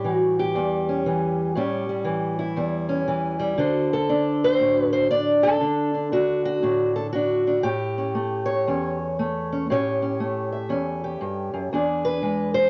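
Swaggering and gritty, this short cut from a longer acoustic country blues piece rolls along with a loose swung feel in 4/4. A lone fingerpicked steel-string parlour guitar carries everything from the first second to 12.7 seconds, ranging from its low bass strings up into its upper notes. Its tone is dark and boxy, sitting up front in the mix with the character of cassette tape. The harmony moves from A7 to D7 at 3.6 seconds, back to A7, then reaches E7 near the close. A moderate studio reverb gives the guitar a little space, while the home cassette recording rolls off the top end for a dusty, homespun sound.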